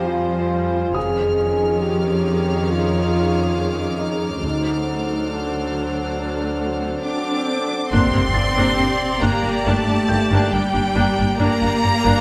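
A tense, uneasy suspense film score at a slow 69 BPM, this passage, cut from a longer piece, opens on shifting chords over bowed strings, with a violin section carrying the melody above a distant viola section using portamento, a focused cello section and a double bass section from 0.9 s. A second, close violin section adds high texture until 7.4 s, while a present French horn section and a pure, ethereal glass harmonica hold sustained chords, and a very quiet, felt-muted upright piano with audible action noise adds soft texture. An electronic swell leads into an impact at 7.9 s as the music settles into G minor, where a lush background violin line joins, all within a moderate scoring-stage reverb.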